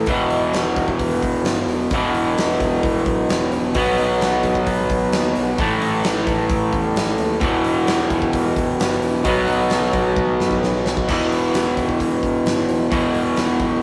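Smoky and heavy, this short cut from a longer blues rock and southern rock power-trio piece moves at a straight 131 BPM in 4/4, with a raw, lo-fi, double-tracked overdriven guitar riff up front cycling through E5, B5 and A5 power chords. Beneath it a growling, overdriven picked electric bass sits in the background, direct and amped, while a huge arena kit with a fat snare, punchy kick, hi-hat and bright crash cymbals drives the beat and breaks into a fill from 10.2 to 11.1 s before the riff returns to E5. The whole thing carries the rough, lightly reverberant sound of a rehearsal room.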